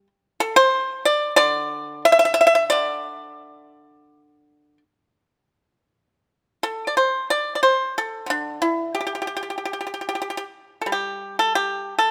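Flowing and elegant, this fragment of a longer Chinese traditional piece features a solo pipa, played with fingerpicks, in the D shang mode, tuned to A4 = 444 Hz, moving freely in rubato around 80-95 BPM in 4/4. The bright, percussive pipa sits up front and dry, ranging from D3 to E5, with close, detailed microphones and a light touch of reverb around it. A new section begins at 5.5 seconds and carries the passage to its close at 12.1 seconds.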